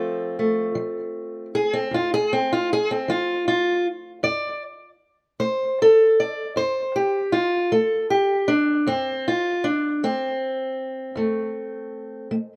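A fingerpicked steel-string acoustic guitar plays alone throughout this soulful, laid-back 12.6-second snippet of acoustic country blues in F major, its dark, woody, boxy parlour tone and old strings sitting up front with a slapback echo in a dry outdoor setting, unhurried at 52 dotted-quarter beats per minute in a straight 12/8 feel over a single F chord.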